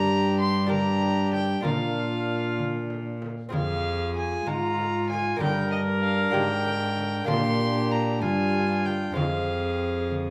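Classical renaissance-style consort dance in 6/8 at 64 BPM, rustic and courtly, where a dark, nasal gut-string violin carries the melody over a reedy second line on viola, a mellow, soft-attack trombone and a delicate fingerpicked lute with double strings fill in behind, a rich cello sits up front on the bass, and a small frame drum joins in the background from 0.7 s, the consort moving through G minor, B-flat and F minor chords with light reverb and close, detailed microphones.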